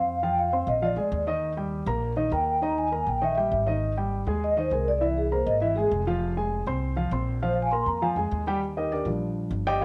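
A mellow, ringing vibraphone played with soft mallets and a fast motor vibrato carries the sunny, lively melody of this Afro-Cuban jazz excerpt until 8.1 seconds, over a dark, intimate baby grand piano with audible action noise and a woody, thumpy gut-string upright bass, the vibraphone and piano both colored by cassette tape, before the piano takes a brief solo from 8.6 seconds in a lightly reverberant home recording.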